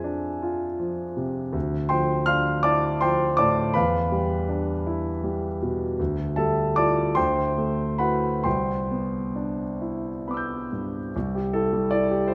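A clear concert grand piano carries this serene, luminous fragment of impressionist classical music on its own, spanning from C2 to G6 with a deep bass and a natural, up-front presence. The playing moves in 6/8 with a free, rubato feel that lets each phrase breathe. Rich extended harmonies drift from Fm6 through Dm9 and Em7, then pass through Dmadd9 and D9 before settling on Cmaj9 at 8.5 seconds. A restatement of the opening section begins at 11.1 seconds on a plain C chord, bringing a sense of calm arrival before the fragment ends at 12.3 seconds. The piano sits in a concert hall with moderate reverb that gives its tone a gentle, spacious glow.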